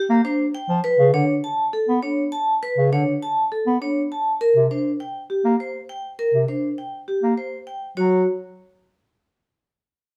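Meditative and hypnotic, this minimalist classical pattern piece moves at 101 BPM in a straight 3/4. Two up-front vibraphones share the texture: one struck with hard mallets carries a bright, ringing melody with medium motor vibrato, while one with medium mallets and the motor off spins dark, smooth arpeggios. A warm, roomy bass clarinet enters at 0.1 seconds with a low classical-style accompaniment, set in a moderate large-studio reverb as the harmony moves from Gm7 through Bm7 to Gm.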